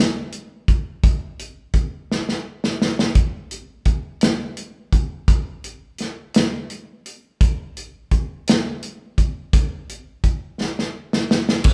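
A gospel groove in 6/8 at 56 BPM carries an uplifting, reverent mood, played by a soul drum kit that enters at 0.3 seconds and sits up front with a punchy kick, a medium-tuned snare, hi-hat and dark crash cymbals under a rolled-off top. Drum fills arrive at 2.1 and 10.6 seconds. The kit sounds natural and acoustic in a live-band room, framed by a moderate large-studio reverb.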